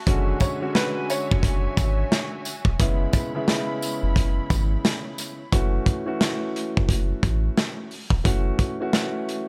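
A rich, bowed string section opens this dark, reflective boom-bap hip-hop excerpt with sustained chords, quickly joined by a mellow baby grand piano with a tape-worn, vintage tint, a deep, round analog bass and a crunchy, gritty breakbeat kit whose punchy kick and snare sit up front in a small room. A bright, slightly detuned upright piano adds a brief woody melody with digital delay between 0.4 and 2.3 seconds, while a jingly tambourine plays until about 5.4 seconds. The strings fall away at 5.5 seconds, leaving the swung groove of drums, bass and dark piano to carry on in studio reverb.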